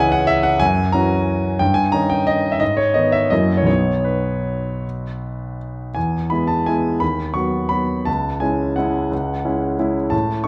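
A dark, intimate recording places a concert grand piano up front in a recital hall, where moderate reverb and long sustain let each note hang in the air. This is a playful, graceful classical waltz in triple time, played solo with a rubato feel that lets the pulse breathe. The piano spans deep bass up into its high register, and the instrument's action noise stays audible beneath its polished, present tone. The opening passage moves through minor and seventh chords before settling on a B major chord at 3.7 seconds. A new section begins at 6.0 seconds on an E chord, passing through B over D# to C# minor, and the clip, cut from a longer piece, ends at 10.5 seconds.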